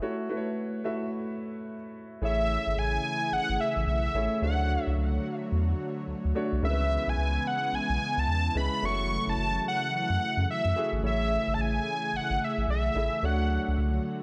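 A dark, warm production sits in a moderate echo-chamber reverb, giving this short R&B fragment, cut from a longer piece, an upbeat and flirty glow with a swung sixteenth-note feel. A concert grand piano opens alone with natural, deep-bottomed accompaniment over an F#m7 chord. At 2.2 seconds the rest of the band arrives: a round, deep analog bass sits up front with a filter sweep, while a smooth, detuned sawtooth pad holds sustained chords with a slow attack, long release, chorus and a moving notch. On top, a thick, bold unison lead with a bright, wave-folded edge carries the melody with vibrato and tape echo, then drops out at 13.8 seconds. The harmony moves through lush seventh chords, Amaj7, Dmaj7, C#m7, back to F#m7 and Amaj7, before closing on Dmaj7.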